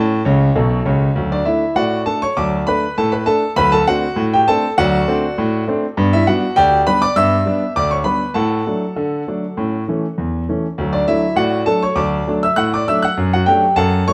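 A clear concert grand piano carries this playful, cheerful ragtime piece on its own, sounding natural and up front with a deep bass that reaches from B1 up to F#6. Set in D major at 100 BPM in a straight 2/4, the piece is cut from a longer performance and opens on an A chord, with a short piano fill between 0.3 and 1.2 seconds leading into the main strain. From 1.2 seconds the harmony moves from D through D7 to G, then to D over A and A before returning home to D and settling on D over F# near the close at 14.1 seconds. The piano was played live in a stone room whose wet reverb, lasting about 1.1 seconds, adds an echoing space around the keys.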